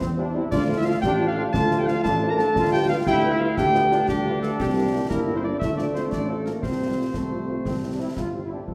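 Spirited and festive, this fragment of a military-style wind band march in 6/8 opens with distant trombone chords, a roomy tuba bass with light vibrato and a close, dry concert snare, bass drum and dark clash cymbals, with a tight, very quiet French horn section joining at 0.2 s. From 0.5 s a dark cornet carries the melody with classical vibrato, while a clear woodwind section with a smooth top and a soft-attack euphonium trace second lines in the background. The mellow brass and reeds sit in the wet reverb of a recital hall or church.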